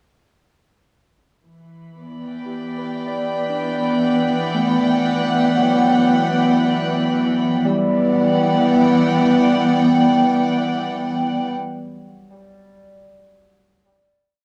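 Recorded at home on cassette, this ambient piece carries the close, wet sound of a small booth, with plate reverb on every part. At a slow 58 BPM in 3/4 and E minor, it is reflective and melancholic, opening on an Em7 chord at 1.4 seconds. A dark studio string section sits up front, bowing intimate sul tasto chords with a soft attack and light vibrato, shifting slowly. In the background, a thumb-plucked Celtic harp scatters ringing arpeggio notes through an analog delay, while a calm glass-harmonics texture holds a single high note, glassy and sine-like, with drifting overtones, chorus and a long release. All three parts fade in together until the strings settle onto a final chord at 7.6 seconds, and the harp's bright notes ring on past the strings until 12.2 seconds.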